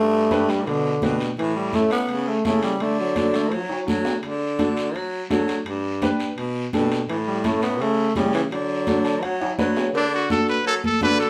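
A growling, gritty tenor saxophone solos up front in this festive, sunny cumbia at 168 BPM in D major, over a breathy baritone saxophone bass line, a woody upright piano that adds a fill ending at 9.9 seconds, bright high-tuned congas, a raspy guiro, and ringing timbales and cowbell in the background, until a brilliant, punchy trumpet with scooped notes takes the melody at 10.0 seconds, the whole mix set in a wet studio reverb and heard from further back in the room.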